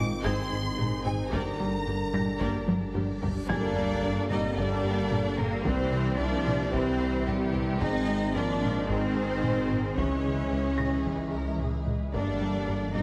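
A rich cello section carries the low end of this tense, vast hybrid orchestral and electronic film cue at 111 BPM in G phrygian, joined by a rubbery, saturated square-wave bass riff, a very quiet double bass section and a round sub bass, while a taiko ensemble with heavy sticks drives from 0.2 seconds. Above them, a lush, vibrato-laden violin section sings the melody over a distant second violin line, an intense viola section, dark horns, mellow trombones and a swarming, detuned granular drone, with a soft, boxy felt-muted upright piano adding tape-echoed texture. A huge, bright reverse cymbal and sub drop land on an impact at 3.5 seconds, and the whole mix sits in a recital-hall reverb with a heavily compressed, radio-like sound.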